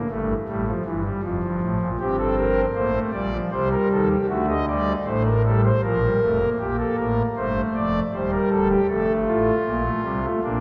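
A classical, baroque-style four-part fugue for solo pipe organ, this short passage, cut from a longer piece, moves at 78 BPM in a straight 3/4 in G minor, with a mood both solemn and driving. The organ speaks on its foundation stops, its tone thick and romantic in voicing, placed up front and spanning from a deep D1 floor up to Eb5. A wet church reverb with a long 3.3-second decay surrounds the instrument, letting each chord bloom into the space. The harmony travels from an open A7 through Fadd9 and a half-diminished chord over C to a D7 that settles on G minor, reaching a second section at 6.6 seconds. From there the line passes through Cm over Eb and comes to rest on an F chord, leaving the phrase suspended as the fragment breaks off.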